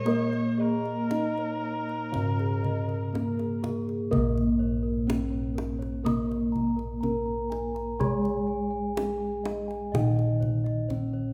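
Over a steady, straight 4/4 pulse at 62 BPM driven by a tight, dry kendang, this shimmering, ceremonial Javanese gamelan excerpt layers ringing bronze metallophones carrying the melody, accompaniment and arpeggios beneath the soft, round beating of up-front bossed gongs in the bass and fainter bossed-gong arpeggios, while a distant, dark, woody erhu with vibrato and portamento adds a second line that falls silent at 3.6 seconds, all set in a moderate recital-hall reverb.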